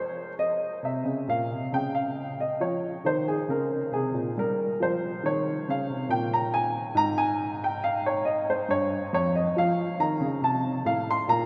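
Bathed in the long, echoing reverb of a vast cathedral, this fragment of a grave, introspective baroque-style suite movement in F minor features a natural, up-front baby grand piano playing solo in a rubato 3/4 at 69 BPM, spanning F2 to C6 as its harmony moves through C, D-flat and a rich E-flat thirteenth before settling from F minor over A-flat onto F major at 9.6 seconds.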